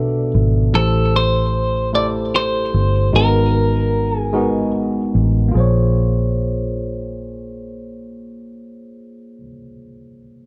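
Yearning and late-night, this slow six-eight R&B fragment, cut from a longer piece, moves at 50 BPM through Bm7, Am7, Abm9 and Bbm9 chords in a dry setting with little reverb. A clean, picked, compressed electric guitar carries the melody through a tape echo until 4.7 seconds, while a worn, slightly out-of-tune tine electric piano, played through a combo amp with a phaser, supplies warm accompaniment until 10.5 seconds. Underneath, a vintage foam-muted fingered electric bass sits dark, round and amped up front until 9.4 seconds.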